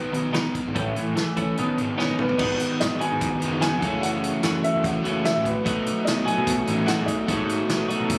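A bright, clean twelve-string electric guitar riff sits up front over a dark, overdriven guitar tucked in the background with lush chorus and a punchy fuzz bass, all moving through B, A and Badd9 in this wistful yet upbeat indie rock excerpt at 147 BPM. A vintage acoustic kit with a tight kick and rolled-off top joins almost at once. A woody, smooth upright piano melody with slapback echo enters at 2.2 seconds, and the kit's fill from 2.0 to 2.4 seconds leads into a new section over G#m7, F#m7 and B7. The whole excerpt has the light club reverb of a phone recording made in the room.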